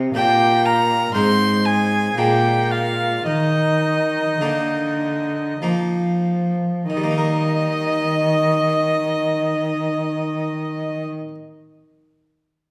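Dance-like and flowing, this short cut from a baroque-style sonata movement in triple time has a distant solo oboe carrying the melody with light vibrato and a soft attack, while a rich, smooth violin sings an up-front second line above it. A warm, expressive cello anchors the bass with vibrato and portamento, and an airy, round harpsichord supplies plucked continuo accompaniment. The music gradually slows through its first 6.9 seconds before settling into a new section, all bathed in the roomy reverb of a recital hall.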